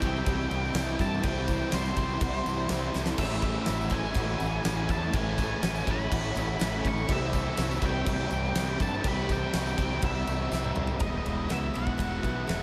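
A huge, up-front arena drum kit with a fat snare, punchy kick and fills near 2.9 and 10.5 seconds drives this wistful, hazy shoegaze and dream-pop rock excerpt, where a dark, distorted octave-fuzz lead guitar sings its tape-echoed melody over a round fuzz bass, two biting overdriven guitar riffs (one blooming with reverse reverb, the other double-tracked and stopping at 11.0 seconds), a very quiet raw garage guitar riff, boxy, shimmering twelve-string acoustic arpeggios, a deep, moody sawtooth pad and a jingly tambourine, with the whole mix soaked in a huge, dreamy reverb as the chords shift toward Emaj9.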